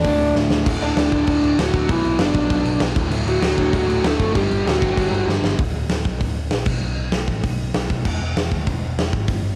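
This home cassette recording with light reverb captures a rowdy, upbeat punk rock cut in D major at 195 BPM, led by a big acoustic drum kit up front with a fat snare and punchy kick in a bright stone room. A dark, lo-fi lead guitar through a small cranked amp carries the melody with overdrive and analog delay over background riffs from a warm semi-hollow guitar and a raw garage guitar, while a growly, amped electric bass drives underneath. After a drum fill, the guitars drop out by 5.6 s, leaving bass and drums over a Bmmaj7/D chord that gives way to chordless playing until the cut ends at 9.6 s.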